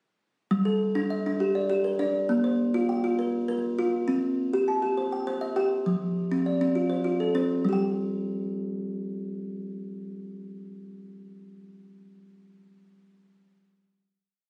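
A solo kalimba enters at 0.5 seconds with a woody, hollow-bodied interlocking ostinato in a warm, hypnotic southern African traditional, mbira-style cycle at 135 BPM in 12/8 and G equiheptatonic tuning, cycling through Gm, Bb5, C and F before a dark, ringing final note sounds from 7.6 seconds, the instrument sitting up front in a phone recording with moderate studio reverb and compression.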